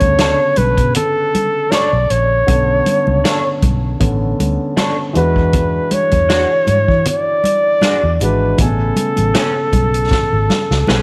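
A close, vibrato-rich flugelhorn carries the melody over mellow dark piano, a round foam-muted bass, a punchy up-front vintage drum kit and damped congas in the background in this silky, bittersweet 1970s-style soul passage at 79 BPM in B dorian with a light 16th-note swing, joined at 0.2 seconds by a slightly broken-up, lo-fi electric guitar riff with ensemble chorus as the chords move from Bm9 to E9 to Amaj9 under light reverb, before a drum fill at 10.1 seconds closes this portion of a longer piece.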